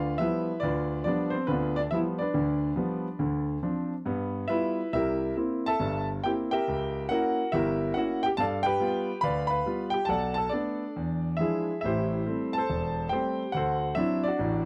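Relaxed and warm, this solo jazz excerpt in G mixolydian moves at 140 BPM in 4/4 with a swung, rubato feel, cut from a longer piece. A clear concert grand piano plays alone throughout its 14.7 seconds, natural and up front with a deep bass, ranging from E1 to B5 over a progression that opens on G7 and passes through C#dim7 and E7b9 before closing on D7. Close, detailed microphones and light reverb capture the instrument's clear tone.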